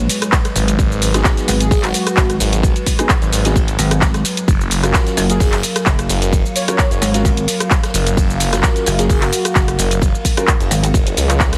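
Bass house at 130 BPM in 4/4 with a light sixteenth-note swing, this aggressive, gritty excerpt cut from a longer piece moves from G#m7 to F#maj7 at 4.5 seconds. A punchy electronic kick and a bright house kit of hi-hat, handclaps, rim click and cabasa sit up front, while a very quiet jazz brush kit with dark cymbals, ride and a high-tuned snare adds a natural small-room texture underneath. Two basses drive the low end: a pulsing, heavy pluck wobble bass with overdrive, chorus and sidechain pumping, and a swirling, thick detuned saw bass with phaser that enters at 0.6 seconds. A deep, moody analog pad holds sustained chords with chorus and pumping, and in the background a boxy grand piano plays stabs roughened by 12-bit sampler grit and delay. An airy, dreamy lead with vibrato and chorus floats in briefly at 1.6 seconds and returns at 5.3 seconds, all pressed together by a heavily compressed, radio-like mix in a small room.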